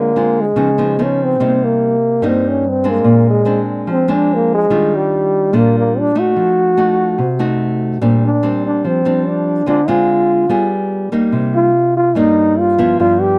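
Dry and close, this 1970s-style studio recording sits in a modest booth ambience, with both players placed up front. It is a short, intimate and melancholic bossa nova cut from a longer piece, running in a straight 4/4 feel. A breathy trombone carries the melody throughout in a mellow, jazz-style solo voice, colouring its notes with vibrato and scooped attacks. Beneath it, a small-sounding nylon-string guitar fingerpicks the accompaniment from 0.0 to 13.4 seconds. The guitar moves through rich, darkened harmony, opening on Dm7b5 and passing through Ebmaj9 and F7b9 before settling on Cm7 near 11.3 seconds.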